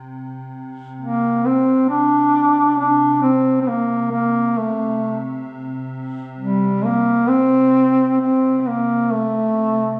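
The recording sits in a moderate scoring-stage reverb with a touch of small-room ambience, giving the sound a spacious, softly lit depth. This is a solemn, mournful Caucasian folk lament in 3/4, played with a free, rubato feel, and it is cut from a longer piece. An evolving wavetable pad holds a low drone from the start, its detuned, triangle-edged tone morphing, with a slow attack, long release, chorus and its own reverb lending a bright shimmer beneath the melody. At 1.0 seconds a warm duduk enters as the solo voice, placed up front and singing in a narrow range with folk-style vibrato. The pairing of that reedy, intimate lead over the shifting, sustained drone gives the passage a grave, prayerful weight.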